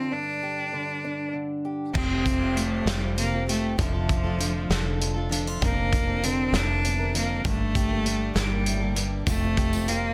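A dense, heavily limited recording with light small-room reverb carries this stirring, yearning indie folk passage in 6/8, cut from a longer piece, where a biting, vibrato-laden cello sings the melody up front over a fingerpicked archtop guitar with audible finger squeak, before a background jumbo steel-string guitar, a foam-muted fingered electric bass and a gritty, saturated drum kit with dark cymbals and a punchy kick join at 1.9 seconds to build the arrangement, and a jingly, close tambourine slips in at 9.3 seconds.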